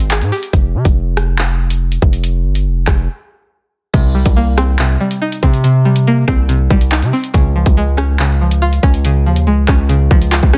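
A distorted 808-style bass sits up front in this menacing, dark drill excerpt at 141 BPM in a half-time feel, its heavy, aggressive sine tone carrying a noise layer and a fast attack that decays, while a drill drum kit with a hard-clipped kick and metallic hats sits up front beside it. A string-like resonator pluck, twangy and bright with chorus, phaser and a low-pass filter sweep, sounds an Abmaj7 at the very start, drops out, then returns at 3.9 seconds over Cm7 and Db after a break from 3.1 seconds. The dense, heavily limited modern master wraps the parts in a digital ambience, and the piece is in C phrygian.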